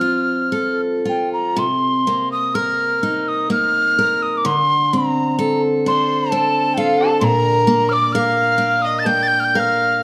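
Haunting and mournful, this excerpt from a Celtic slow air drifts at about 64 BPM in 3/4 with uneven, rubato beats in C dorian. A breathy, up-front tin whistle carries the melody with vibrato, tongued chiff and rolled-off highs over a bright, picked steel-string acoustic guitar. A single biting, nasal fiddle enters at a distance at 5.9 s with a second line, all set in a dark production with a moderate recital hall reverb.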